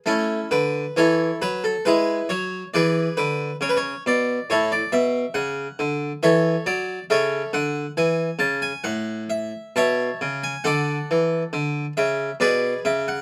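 A solo Italian-style harpsichord opens the excerpt, its plucked, full tone on two sets of strings sitting up front and mid-forward across a range from A2 to A5. This radiant, serene baroque-style suite movement in A major moves at a flexible rubato around 68 BPM in 4/4, passing from A to E7 and back to A, then through A/C# at 7.1 seconds, D at 10.7 seconds and G#dim/B. Light reverb gives the 13.2-second fragment a gentle sense of space.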